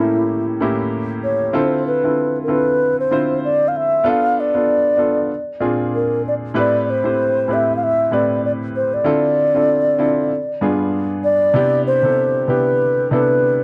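A mellow alto flute and a clear concert grand piano begin together, setting a bittersweet, smooth soul mood in A minor at 96 BPM in 4/4, with a gentle 16th-note swing. The flute carries the melody between E4 and F5, its pure tone shaped by vibrato, a crisp attack and rolled-off highs, and it sits up front with an expressive voice. The piano accompanies from G2 to C5, sounding clear, natural and up front, with a deep bass. The harmony is rich with extended and altered chords, moving from A7b9 through Dm9, Bm7b5 and Bb9 to Am9, then turning through Dm9 and G7b9 before settling on Cmaj9 near 11.6 seconds. The dry, close 1970s-style studio sound carries only light reverb, and the passage, cut from a longer piece, lasts 13.6 seconds, tuned slightly high to A4 = 441 Hz.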